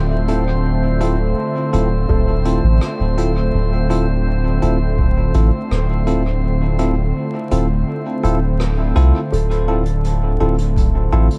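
Meditative and spacious, this dark ambient dub fragment in D minor at 83 BPM rests on a Dm9 chord, where a round, up-front sub bass and a detuned sawtooth pad with chorus sit under a felt-muted upright piano playing dub-echoed arpeggios, bell-like tine electric piano stabs, a glassy drifting-harmonics texture that stops at 9.3 seconds, distant brushed hi-hat and rim clicks, and a deep electronic kick that enters at 2.1 seconds, all wrapped in small-room ambience and vinyl crackle.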